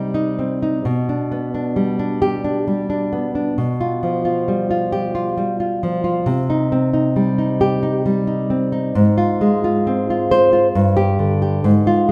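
A romantic piece for solo classical guitar, passionate and melancholic, moving at 66 BPM in 3/4 with a rubato feel through a minor-key progression from Cm toward a closing G5 at 10.8 seconds. The nylon-string guitar sits up front, thumb-plucked and warm, with audible finger squeak, spanning G2 to C5. A wet recital hall reverb surrounds it, giving this excerpt of a longer work a spacious, lingering resonance.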